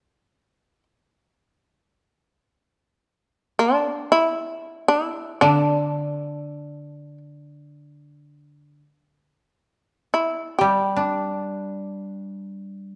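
Unmeasured and in free time, this brief cut from a longer piece of Japanese chamber music unfolds with a still, solitary mood, tuned to A4 = 439 Hz. The shamisen carries the melody from the opening second, sitting up front with a bright, buzzing and percussive plectrum-plucked tone that sounds powerful within its compact range of D4 to G4. At 5.4 seconds the koto joins as accompaniment, played with fingerpicks in a lower register from D3 to D4, its woody, dry voice also placed close but sitting beneath the shamisen in level. The fretless shamisen leads alone for those first moments, so the koto's arrival adds depth under the melody rather than competing with it. A moderate scoring stage reverb with a decay of 1.8 seconds gives the space around the two acoustic instruments a gentle sense of air, keeping the music intimate and contemplative through to 13.0 seconds.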